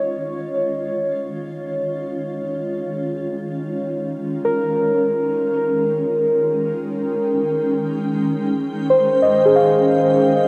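Warm and weightless, this ambient passage floats in free time in Db lydian, resting on a single Dbmaj9#11 chord, and is cut from a longer piece. A granular cloud pad holds sustained chords from Eb3 to G5, its detuned, blurred, full-bodied tone evolving, with a slow attack, long release and its own built-in reverb as it fades in across the full 10.5 seconds. Over it, muted felt-like synth keys play arpeggios between Ab4 and F5, their intimate, dark timbre blending triangle and sawtooth with a noise layer, each note striking quickly and then decaying. Chorus and a diffuse ambient delay color the keys further. Both parts sit up front inside a huge, wet reverb with a 7.4-second tail, giving the whole passage a suspended, cloudlike stillness.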